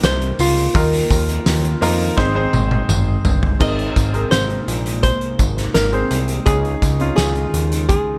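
Hopeful and anthemic, this short cut from a longer piano-driven pop piece moves in a steady, straight 4/4. A clean, dark hollow-body archtop guitar carries the melody, picked and miked through an amplifier, while a clear, natural grand piano lays down the accompaniment beneath it. An airy, breathy pad sits very quietly underneath with soft, mellow sustained chords, and a fat, thick analog bass with a fast-attack filter pluck stays up front. The loose indie kit is punchy and acoustic, with a fat snare, dark cymbals and a pumping room sound, and it plays a drum fill from 2.2 to 3.6 seconds, leading into a second section. A jingly, vintage-toned tambourine stays in the background, and the whole band sits in a small room ambience as the harmony moves from Cm7 through Ebsus2 and Ab to Abadd9 and Dbsus2.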